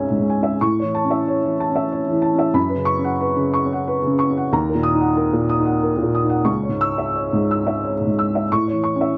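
Neoclassical minimalist piano in triple metre, this short passage, cut from a longer piece, feels tender and peaceful, with a rubato flow that lets the time breathe. A single felt-muted upright piano carries everything from 0.0 to 9.2 seconds, spanning a range from the low bass up into the high treble. Its tone is soft, mellow and dark, with a boxy, intimate character that sits up front. The harmony moves through C#m, A, F#sus4 and D#m before returning to C#m and settling on A near the close. Close, detailed microphones and a light reverb keep the sound near and personal.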